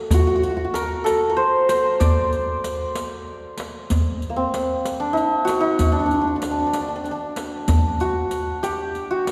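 Heard from further back in a reverberant concert hall, this passionate excerpt of Persian modal ensemble music unfolds in D dastgah homayun at 63 BPM in a straight 6/8. The santur carries the melody up front from Bb3 to D5 with a shimmering, ringing hammered tone, while from 0.1 s the tombak adds deep, warm hard-hand strokes that sound as if caught in a small room, and the quieter riq brings dark, close and dry jingles. The music moves into a new section at 3.9 s, and all three instruments continue to the cut.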